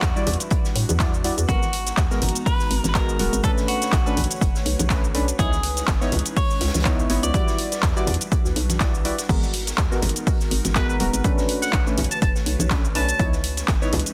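This is a dense, heavily limited modern mix with little reverb, a short cut from a longer deep house track with a late-night mood and a swung sixteenth-note groove. An overdriven, punchy electronic kick sits up front, layered with an overdriven house kit of handclaps, hi-hat, shaker and crash. A very quiet small-room acoustic kit adds natural snare and hi-hat, and dry, ringing congas played with soft hands sit in the background. A hollow, bouncy FM bass pumps against the kick beneath soft chord stabs with chorus, delay and a filter sweep, while a breathy, warbling pad with chorus hovers behind them as the minor ninth chords cycle. A bright, clean picked electric guitar carries the melody through tape echo and 12-bit sampler grit until 8.8 seconds. A nasal, distant muted trumpet with vibrato takes a short solo from 10.8 to 13.2 seconds, also treated with sampler grit and delay.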